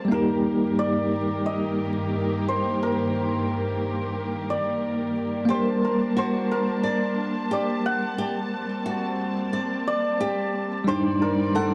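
Trip hop with a hypnotic, dark mood and a lightly swung groove, cut from a longer piece. A bell-like tine electric piano with tremolo and a low-pass filter plays the accompaniment beside a veiled, muted string section holding bowed chords through vintage sampler grit, while an up-front santur carries a shimmering hammered melody through tape echo. At 5.5 seconds a fingerpicked flamenco guitar joins with delayed arpeggios, and the mix sits in a moderate echo-chamber reverb with vinyl crackle.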